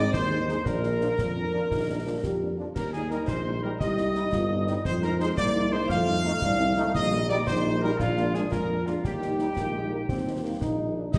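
In a straight 6/8 lilt at 115 dotted-quarter beats per minute, this festive, spirited military-style march for wind band in Eb major is cut from a longer piece. A bright trumpet section carries the melody with light vibrato, while a warm euphonium, a distant woodwind section and a crisp, pure piccolo add second lines. A very quiet French horn section, mellow trombone chords and an up-front, roomy tuba bass fill out the ensemble, joined from 0.1 seconds by dry concert snare, bass drum and dark clash cymbals in a reverberant recital hall heard from further back.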